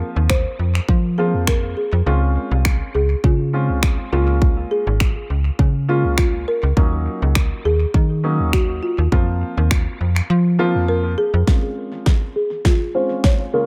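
An echo-heavy mix with light reverb and small-room ambience frames this carefree, summery dance-pop excerpt in Db major, moving at 102 BPM in a straight 4/4. A woody folk marimba played with soft mallets carries the melody, its round, mellow tone passed through a low-pass filter and analog delay. Beneath it, a baby grand piano with short sustain plays the accompaniment, pumping with sidechain and likewise filtered and delayed. Up front, a snappy FM bass with a metallic attack anchors the low end with its own sidechain pumping, while a punchy electronic pop kit adds finger snaps, a fat snare and kick. The chords move from Fsus4 through Dbmaj7, Bbm7 and Ebm7 back to Fsus4, with the kick muted briefly at 2.1 seconds and a silent gap opening at 10.3 seconds. From 11.5 seconds a build-up with a drum fill and a filter sweep arrives on Dbmaj7 as the excerpt is cut off.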